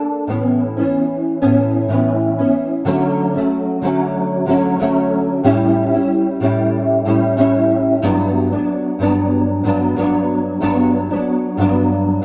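This laid-back, sunny indie pop fragment at 93 BPM in D major, tuned slightly flat to A4 = 439 Hz, features a lone nylon-string guitar, fingerpicked and up front with a dark, small acoustic tone made warbly by chorus and pitch drift, gently swinging its sixteenths over light reverb as it moves from Aadd9 into a new passage at 2.9 seconds through Dmaj7, A7 and Gmaj7 before the cut at 12.2 seconds.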